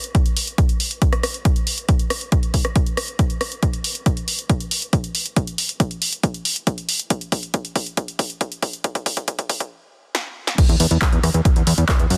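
A punchy analog drum machine drives this uplifting, euphoric trance excerpt at 138 BPM in a straight 4/4. Its tape-warm snare, handclaps, hi-hats, rim clicks and crash cymbal sit up front, with a short room around snare, clap and hats, beside an electronic kick, as a filter sweep and drum fills carry the build-up through the first 10.6 seconds. At the drop a plucky, funky analog bass arrives at 10.7 seconds, a sawtooth-and-square tone with ring modulation, wave-folded edges, a fast attack and sidechain pumping, all set in digital ambience within a dense, heavily limited modern master.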